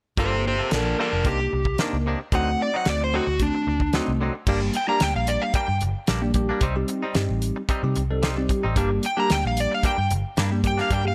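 An overdriven slide guitar sits up front with the mournful melody, falling away at 5.8 seconds and returning at 9.1, in this smoky, straight-eighth soul blues excerpt where a bell-like tine electric piano with phaser supplies accompaniment, a twangy, direct-recorded clean electric guitar adds picked stabs, a round, foam-muted vintage bass holds the low end, and a dry, damped 70s drum kit with a fat snare and tight kick keeps time under light reverb.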